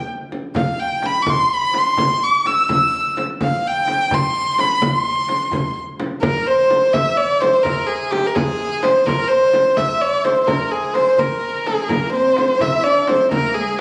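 Captured on a phone in the room with club reverb and compression, this passionate, festive Persian modal ensemble piece moves in a straight 6/8. A dark, woody bowed violin with vibrato carries the melody up front, over a deep, large frame drum and a tight tombak in the background, both struck with hard hands. A shimmering, hammered santur with tape echo adds a second line from 6.2 seconds, and a nasal, boxy cello with vibrato and portamento joins at 11.9 seconds for the final moments.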